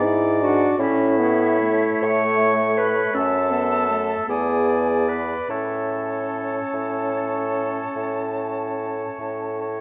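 A slow, tender and serene romantic movement for wind quintet in 12/8 with rubato, this passage from a longer piece opens with the airy, expressive flute carrying the melody over a clear, vibrato-touched oboe second line, while the French horn and roomy clarinet fill the middle and a soft-attacked bassoon sits up front on the bass, the ensemble set in the wet reverb of a scoring stage with a dark production.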